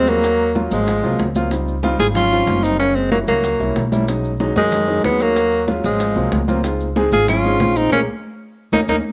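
A breathy, close-miked tenor saxophone leads up front with scooped notes, while a second, mellow tenor saxophone with vibrato and cassette-tape coloring plays a background line in this lively, sophisticated Afro-Cuban jazz excerpt at 187 BPM in 4/4. A short-sustain grand piano, also tape-tinged, comps through jazzy chords such as Ebm7, Ab13 and Dbmaj9#11 over a woody, growly pizzicato upright bass. High-tuned congas, grainy maracas and very quiet low-tuned bongos fill out the percussion in a small, lightly reverberant home-cassette sound, and a drum fill with a band accent arrives at 7.9 seconds.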